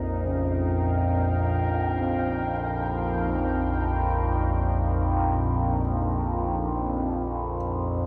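An up-front, resonant drone with moving overtones and a phaser anchors this cavernous, dark ambient drone excerpt in free time, while a deep, detuned pad with wave-folded, ring-modulated sustained chords fades in over Eb and a very quiet, worn grand piano with audible action noise plays arpeggios beneath, all steeped in a wet spring reverb and heavy echo across its 8.1 seconds.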